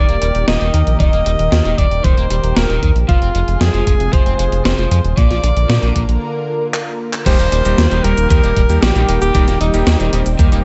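Synthwave at 115 BPM in Eb major, romantic and nostalgic, cut from a longer piece: a breathy, jazz-style alto saxophone carries the melody with vibrato and scooped notes through tape echo, over a lush, detuned unison pad pumping with sidechain under chorus and phaser, a round, deep analog bass up front, and an overdriven, picked electric guitar riff sitting in the background. A gated 80s digital drum machine with handclaps, shaker, hi-hat, crash and a gated-reverb snare enters at 0.1 s, and a knocking, layered electronic kick joins from 1.0 s. A break at 6.2 s with a drum fill at 6.7 s leads to a new section where a bright, clangy electric grand piano adds stabs from 7.3 s. The production is dark and dry with a tape-warm tint, moving through Eb, Fm and Bb before returning to Eb.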